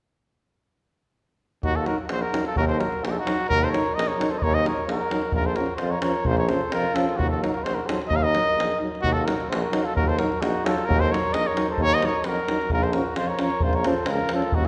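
A brisk, straight 2/4 pulse at 130 BPM drives this fiery, bittersweet Balkan brass band excerpt, cut from a longer piece and set in Eb dorian sharp4, moving between Ebm and Bbm. The tight, acoustic davul and a clear, vintage tuba with light vibrato anchor the bass and percussion from 1.6 seconds. A trumpet carries the melody up front, warm and lightly vibrato-tinged in a classical style, while a mellow flugelhorn sounds a distant, roomy second line beneath it. From 1.9 seconds a soft-attacked, close-miked trombone and a far-off euphonium hold a quiet accompaniment in the background. The phrase is stated twice, the second starting at 9.0 seconds, and the whole band sits in a wet concert hall reverb that lends the brass a spacious glow.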